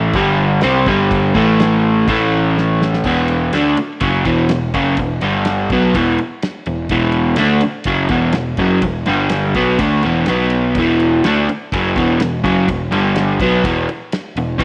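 Garage rock in E minor at 125 BPM, this swaggering, raw excerpt puts a crunchy, double-tracked overdriven guitar riff up front over a round, fuzz-laden picked electric bass and a cloth-damped, thuddy drum kit with dark cymbals and a tight kick, moving through power chords on G5, A5 and E5 before a drum fill at 2.6 seconds leads into a longer passage from 3.0 seconds that briefly touches B5, all in a small room with light reverb.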